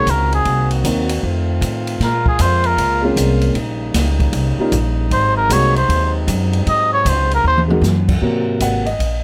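A cup-muted trumpet carries the melody up front in this brassy, energetic big band swing excerpt, its veiled, breathy tone touched with light vibrato, while a brilliant, tight trombone section holds sustained chords beneath. A woody upright bass plays a thumpy pizzicato line alongside warm upright piano accompaniment and an open jazz drum kit with dark cymbals and a boomy kick, which adds a fill at 7.4 seconds. The trumpet stops at 7.6 seconds, and the piano takes a brief solo from 8.2 seconds, all captured with close, detailed microphones and light reverb.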